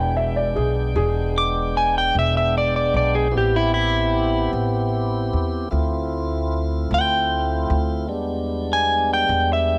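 A mournful, soulful slow blues in 12/8 at 50 BPM opens with a woody, polished upright piano playing a brief second line over sustained tonewheel organ chords and an upright bass. The piano falls away at 1.3 seconds, leaving the organ, lightly overdriven, full and carrying key click through a slow rotary speaker, to hold the harmony beneath a growly, pizzicato bass with steel strings that sits up front. At 1.4 seconds an electric guitar takes the melody, picked and slightly broken-up at the edge of break-up, its tone colored by cassette tape and placed prominently in the mix. The harmony moves from E7#9 to Am9 and Dm9 before returning to E7#9. Light reverb and the home-recorded cassette sound frame this short cut from a longer piece.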